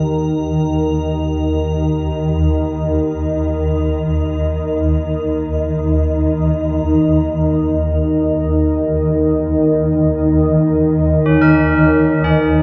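In free time, this desolate, unsettling dark ambient drone excerpt sets a swarming, granular drone low in the register against a sweeping, resonant pad holding sustained chords, both up front in a vast, echoing space where a faint mains hum lingers. An icy, crystalline glass pad adds a faint, airy shimmer until 6.7 s, when the texture shifts into a second section. At 11.3 s, solemn, metallic tubular bells ring out in arpeggios just before the cut at 12.6 s.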